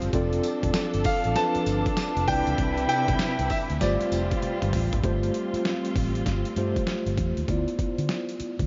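Punchy and bouncy, this short excerpt of new jack swing R&B moves at 98 BPM with a swung sixteenth feel. A gritty, overdriven sampler-style drum kit with a thumpy kick sits up front over a round, foam-muted electric bass, while a tine electric piano with medium tremolo accompanies and a lush, bowed string section holds chords from F6 through Cmaj9 and G9sus4, with the strings stopping at 7.5 s as the harmony lands on Dm69. A clear grand piano carries the melody with delay from 1.1 to 4.7 s, a drum fill arrives at 4.4 s, and the whole mix is dreamy and soaked in a huge ambient reverb.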